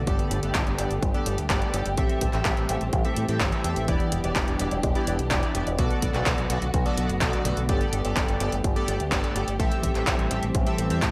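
Danceable and nostalgic, this italo disco excerpt moves at 126 BPM in a straight 4/4. A punchy electronic kick anchors the groove, overdriven and re-recorded in a large room, while a house kit adds handclaps and hi-hat with its own overdrive and gated reverb. A fingered electric bass runs through an envelope filter and tube saturation, giving a warm, direct low end. A chorused polysynth plays glossy, retro stabs built from pulse and sawtooth waves with ring modulation and a filter sweep, carrying a cassette-tape grain. Meanwhile, a dark, woody string section holds lush bowed chords with vibrato as the harmony cycles through Gadd9, Am7, Em7 and Bm7, set in a light reverb.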